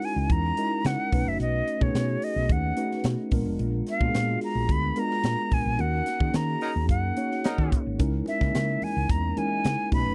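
Polished 1980s jazz-funk pop with a slick, nocturnal mood, moving at 109 BPM in a straight 4/4 and centred on C# dorian. A jazz flute carries the melody up front between C#5 and B5, its airy, vibrato-laden tone softened by a gentle attack. Beneath it, a mellow tine electric piano with analog chorus supplies the accompaniment. A crisp fusion drum kit with a high-tuned snare and punchy kick drives the groove, while a woody, round fretless electric bass enters at 0.2 seconds, reaching down to E#1. A band accent falls between 5.8 and 8.0 seconds, where a vintage-sounding horn section adds a brief second line from 6.6 seconds, and very quiet, thin-skinned congas appear at 8.0 seconds as the harmony returns to C#m69 after passing through B9, A#7b9 and D#m7. The sound is dry and close, in the manner of a 1970s studio, and this excerpt is cut from a longer piece.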